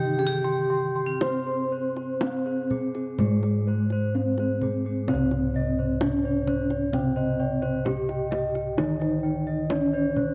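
Javanese gamelan in a hypnotic, shimmering mood, cut from a longer piece, in which a mellow bronze metallophone carries the melody over a lower metallophone accompaniment and round, beating bossed gongs in the bass, alongside a vintage, band-limited metallophone arpeggio with tape echo, joined by soft gong arpeggios in the background from 0.2 s and a tight, dry kendang from 0.4 s, while a bright, up-front vibraphone struck with hard mallets adds a second line only until 2.6 s, the whole sitting in a moderate spring reverb.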